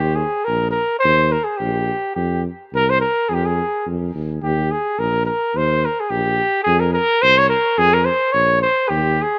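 Balkan folk in 2/4 at 107 BPM, this short F minor fragment of a longer piece feels restless and bittersweet, with a swung sixteenth-note lilt. A mellow trumpet carries the melody from the start, its vintage, classical-style tone sitting up front as it moves between G4 and Db5 until 9.4 seconds. Beneath it, a mellow tuba holds the bass line between Bb1 and F2, its light vibrato and classical-style playing also placed close to the listener, stopping at 9.2 seconds. The harmony alternates between Eb and F5, and the same phrase is heard twice in succession, the repeat beginning at 4.4 seconds. Light, small-room reverb surrounds the pair in a rough home demo mix.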